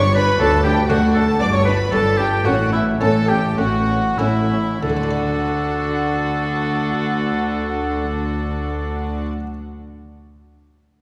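Festive and brilliant, this short cut from a baroque-style concerto movement slows down through its first 4.8 seconds as a clear, close-miked oboe carries the melody with a gut-string violin section singing it higher above, while a second violin section plays a second line in the oboe's range, a dark viola section sits in the background from 0.2 s, a smooth-topped cello section and a rich, up-front double bass section hold the bass, and a muted, lute-like buff-stop harpsichord accompanies very quietly, the ensemble heard from further back in a reverberant concert hall.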